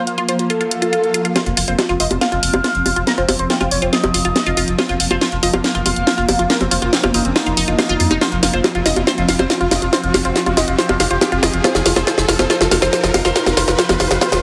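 A heavily compressed, radio-like sound with a moderate plate reverb frames this driving, alien psychedelic trance excerpt at 140 BPM in straight 4/4, tuned to A4 = 445 Hz. An evolving wavetable pad holds sustained chords from the start, its morphing, detuned tone coloured by ensemble chorus, phaser and vintage 12-bit sampler grit. Alongside it, a punchy unison pluck plays a bright riff through cassette tape and tape echo, with a filter sweep and moving notch. A gritty, screaming overdriven synth lead carries the melody with ring modulation and vibrato, set in phaser and digital delay. Up front, an electronic garage drum kit of bongos, hi-hat and a cracking snare sits in studio reverb, and a very quiet swell and riser effect enters at 0.6 seconds before a build-up and drum fill take over from 1.4 seconds. A round, dark analog bass joins at 1.5 seconds, deepening the low end.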